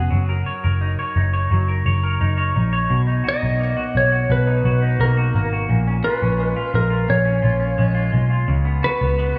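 Dreamy and blissful, this short dream pop excerpt drifts along at 86 BPM in a straight 4/4, moving through Gb6, Cbmaj7, Bbm7 and Db7sus4. A bright, twangy clean electric guitar picks arpeggios softened by subtle chorus and tape echo, while a dark, round, foam-muted electric bass sits up front beneath it. At 3.3 seconds a warm, compressed lap steel enters with a slide melody bathed in tape echo, and a lush hall reverb with small room ambience gives the whole an airy glow.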